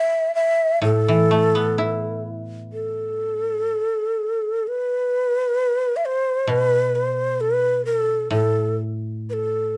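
A breathy, hollow shakuhachi opens alone on the melody, its crisp, chiffy attack and vibrato sitting up front before the koto enters at 0.8 seconds with dry, woody fingerpicked accompaniment in a lower register. This still, austere Japanese chamber piece moves at a slow 64 BPM in 2/4 with uneven, rubato beats, drawing on an A hirajoshi scale. The dark production adds light reverb, and the fragment, cut from a longer piece, shifts into a new section at 2.7 seconds and runs to 9.8 seconds.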